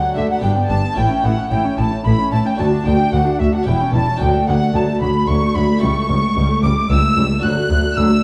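A mellow, hollow silver flute leads this festive, brilliant baroque-style concerto passage in D major, sharing the melody with a gut-strung violin section played with light vibrato, while a reedy, distant second violin line sits in the background and a nasal viola section and a round Italian-style harpsichord fill in the accompaniment. From 0.2 seconds a rich cello and double bass section anchor the bass at 111 BPM in 3/4, as the harmony passes through G, A, D, C#dim/E and A7/C# before settling on D. The sound is dark and reverberant, set in a recital hall with a touch of vinyl crackle.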